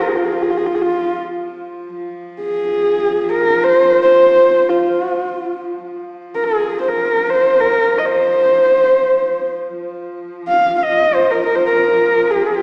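A dark, woody horsehead fiddle carries the melody in this short cut from a longer piece of Mongolian folk music, its husky bowed tone sitting close and up front with vibrato, portamento and a slapback echo. Beneath it, a second horsehead fiddle holds a steady drone on F3, clear and focused but placed more distantly and much lower in level. The music moves in free time in F yu mode, and its mood is solemn and vast. The melody ranges from F4 to F5 across two passages built on the same material, the second beginning at 5.9 seconds. A wet concert hall reverb surrounds the fiddles, heard from further back in the room with a small-speaker character.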